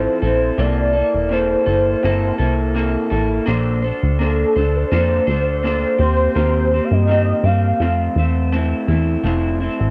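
A hazy home cassette recording with light reverb opens this dreamy indie and bedroom pop excerpt, where a velvety synth lead with ensemble chorus, tape echo and gliding portamento floats over a slightly broken-up, lo-fi electric guitar through a small old amp with subtle chorus and vibrato, while a punchy, dark analog bass with a filter pluck sits up front; the lead stops at 8.5 seconds as guitar and bass carry on to 9.9 seconds.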